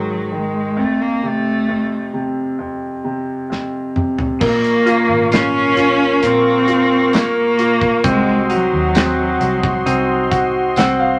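A slow, straight 4/4 pulse at 66 BPM carries this longing, melancholic pop ballad in Bb minor, opening with a rich, smooth bowed cello melody sung with vibrato over a brilliant grand piano, until a drum fill at 3.5 seconds ushers in a polished, airy studio kit with bright cymbals and a tight kick. At 4.4 seconds a warm detuned sawtooth pad with chorus, a twangy, clean picked electric guitar arpeggiating through spring reverb, and a dark, round, foam-muted fingered bass settle in behind, joined shortly after by a faint, jingly tambourine. The cello stays up front in a wet, reverberant space before the piano closes with a fill at 10.3 seconds, in this passage cut from a longer piece.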